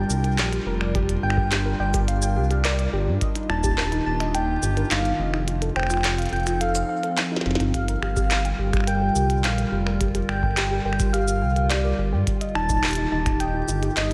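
A dark, detuned saw bass sits up front in this eerie, glitchy IDM excerpt, its deep, rumbling, beating tone anchoring a straight 4/4 groove at 106 BPM in G minor. Above it, a warbling, tape-like pad holds nostalgic, lo-fi chords with a slow attack and long release, coloured by chorus, phaser and its own reverb. A dusty, vintage pluck runs arpeggios through chorus, cassette-tape grit, slapback echo and delay, while a soft, round, keys-like FM lead carries a gentle melody with chorus, slapback echo and digital delay. The glitchy kit of tiny snare, clicky hats, finger snaps, handclaps and shaker echoes throughout, and a deep analog kick joins at 0.9 seconds, drops away, then returns at 7.7 seconds after a drum fill from 7.2 seconds. The harmony moves from Gm7 through Ebmaj9 and F7 and back, all set in a wet concert-hall reverb that gives a big arena sound.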